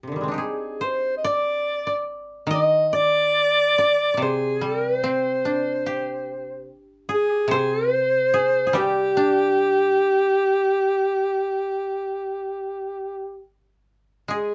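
Calm and austere, this short excerpt of Japanese chamber music moves at a rubato 71 BPM in 4/4, set in G miyako bushi with a tuning of A4 = 439 Hz. A koto opens alone with a second line, soon joined at 0.4 seconds by a mellow alto saxophone that carries the melody up front in a classical solo style, played with vibrato and a distant, roomy quality. A second koto enters at 2.5 seconds as accompaniment in a lower register, and both kotos sound acoustic, warm, woody and dry, played with fingerpicks. The saxophone sits clearly above the two kotos in level, giving the texture a spare, contemplative balance. A moderate studio ambience surrounds the players, with a faint mains hum in the background.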